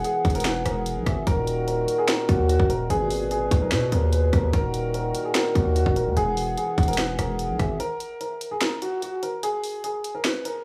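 A worn, boxy grand piano carries the brooding melody with tape echo from the start of this dark half-time trap cut at 147 BPM, alongside a hollow, woody clarinet-like synth line with chorus and echo in the background, reedy pedal harmonium chords, a heavy, saturated 808-style bass and an overdriven, up-front trap kit with a hard-clipped kick, sharp snare, bright hats, rim clicks and finger snaps, until the harmonium, synth and bass stop at 7.8 seconds for a break that leaves piano and drums in the small digital room.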